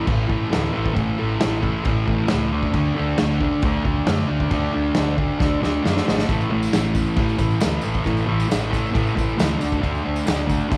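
A double-tracked, up-front fuzz guitar drives this rowdy, raw garage rock excerpt at 135 BPM, playing a dark, distorted riff on A5 and D5 power chords. Beneath it, a round, hollow-body short-scale bass with overdrive and a vintage kit with a punchy kick, dark cymbals and a pumping small-room sound hold a straight 4/4, with a drum fill from 5.4 to 6.3 seconds. A jingly tambourine slips in at 6.3 seconds, sitting in the background of a dry mix.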